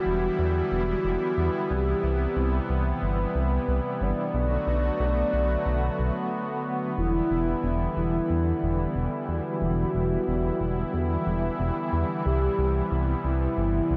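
A soft, octave-layered synth lead carries the melody over a smooth, detuned analog pad from the opening moment. The lead is round and dark, with chorus, tremolo, vibrato and tape echo, while the pad sits bright and up front with its own chorus and tremolo. A glossy, retro synth bass with pulse-width modulation, ring modulation and a filter sweep joins at 0.1 s, driving this nocturnal synthwave cut at 91 BPM in E minor through Em7, Cmaj7 and Bm7, with a brief break at 6.3 s, all inside a lush hall reverb that leaves the mix dreamy and soaked.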